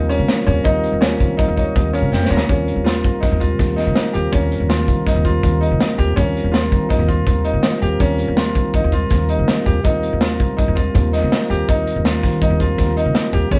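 A mellow, flute-like tonewheel organ with audible key click and a slow rotary speaker opens this intricate, bright progressive instrumental in 5/4 at 163 BPM, alongside brilliant concert grand piano arpeggios and a woody pizzicato upright bass in Eb mixolydian. A gritty, saturated breakbeat kit of hi-hat, tight kick and medium-tuned snare sits up front with a rolled-off top, and an organ fill and a drum fill lead into the next section at 2.5 seconds. The band plays live in one room with moderate reverb, riding an Eb7 chord that shifts to Eb69 at 9.8 seconds in this section cut from a longer piece.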